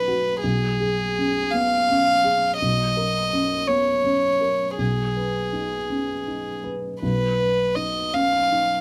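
A rough home demo mix with light reverb carries this short, tender and hopeful neoclassical fragment for piano and strings, cut from a longer piece and moving in a rubato 6/8. A felt-muted upright piano sits close and intimate, its thick felt giving a mellow, short-sustained accompaniment over C#/B, Bmaj9 and G#m/B. A single bowed violin, also up front and a little louder, floats above it with a rich, pure sul tasto tone and soft attack.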